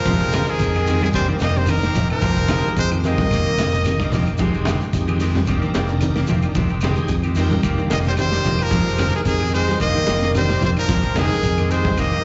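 Afrobeat with a driving, hypnotic pull, this cut from a longer piece circles between Fm9 and Cm7/F over a lightly swung 4/4 groove. A brilliant trumpet carries the melody up front with vibrato and scooped notes, joined by a raspy tenor saxophone on a lower second line with slapback echo; the horns play from the start to 4.1 seconds and return at 7.9 seconds. Underneath, a round, punchy fingered bass anchors the groove while a crunchy, saturated breakbeat kit with a punchy kick and rolled-off top sits in the background alongside low-tuned, ringing congas. A very quiet grainy shekere and woody claves add close, dry detail. Clean guitar arpeggios with subtle chorus, bright stabs from a hollow-body semi-hollow guitar with a vibrato effect, and a full, shouting tonewheel organ through a slow rotary speaker fill out the backdrop, all three with slapback echo. The whole thing sounds like a live gig heard through the venue's PA, with recital hall reverb and a dull, muffled top end.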